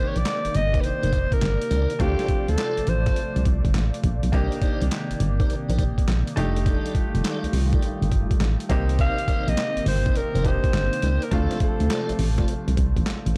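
Confident and bouncy, this short new jack swing excerpt in C dorian moves at 103 BPM with a swung sixteenth feel, built on a gritty, pitched-down boom bap sampler-style kit with a thumpy kick, high-tuned snare, hi-hat and handclaps, and a punchy, round FM bass sitting up front. A raspy alto saxophone with vibrato and scooped notes carries the melody from 0.0 to 3.5 seconds and returns at 9.0 seconds, over a brilliant, intimate grand piano with audible action noise, a smooth sawtooth analog pad with chorus, and background tonewheel organ stabs that are lightly overdriven with key click, chorus vibrato and a slow rotary speaker. The dark production keeps reverb to a minimum as chords such as Cm9, Dm7 and F13 cycle beneath.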